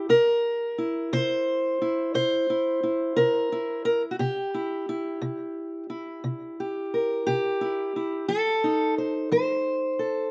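Soulful and laid-back, this short fragment of acoustic country blues in 12/8 features a lone fingerpicked steel-string parlour guitar, placed up front, with a boxy body and the warm tone of fresh strings. It rests on a C7 chord before moving to F7 at 8.3 seconds, spanning from low C3 up to C5. The outdoor recording carries a light touch of reverb.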